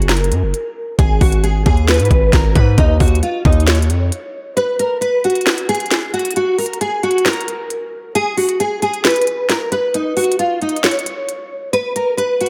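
This hip hop and trap piece, cut from a longer work, has a dreamy yet triumphant mood over a half-time feel. A bright nylon-string guitar carries the melody from start to finish, fingerpicked in a classical manner with audible finger squeak, and its fresh strings are coloured by ensemble chorus and analog delay. A distorted 808-style bass sits up front with a heavy, saturated sine tone, a noise layer and a fast attack that decays, but it plays only until 4.1 seconds. The electronic trap kit runs throughout, with a knocking kick, sharp snare and crisp hi-hats, though the kick drops out at points and a break begins at 6.4 seconds. Light reverb and digital ambience give the mix a produced sheen, with the guitar, bass and drums all placed close and forward.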